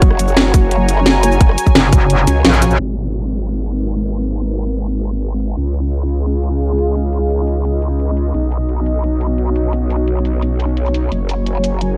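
A growling, detuned growl bass with overdrive and sidechain pumping drives this aggressive, mechanical dark technical drum and bass excerpt, joined up front by a tight electronic kick that drops out at 2.1 s, an overdriven, layered kit with a cracking snare and bright hats, a brief metallic FM wobble bass arriving at 1.8 s, a downlifter from 2.8 s as a filter sweep begins with the second section, and a deep, moody analog pad of slow-attack sustained chords underneath, set in a warm, lightly reverberant production.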